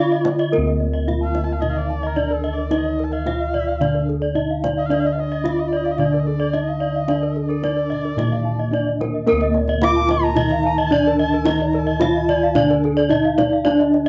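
A steady, straight 4/4 pulse at 110 BPM drives this shimmering, hypnotic slice of Balinese gamelan in D pelog, cut from a longer piece. Round, airy bossed gongs sit up front in the bass, while a tight, vintage-sounding kendang stays in the background from 0.2 seconds. A wooden-mallet bronze metallophone carries the melody with paired tuning that creates shimmering beats, and a padded, mellow metallophone adds a very soft accompaniment underneath. Two metallophones weave arpeggios above: one struck with horn mallets sounds bright and sits up front, and another, with wooden mallets, has a boxy small-room tone and joins at 0.3 seconds. A dark, nasal erhu plays an expressive bowed second line with vibrato and portamento until 12.8 seconds. The melody, arpeggios and erhu carry a cassette-tape colour, and the whole recording sits in wet studio reverb with a homemade, band-limited sound.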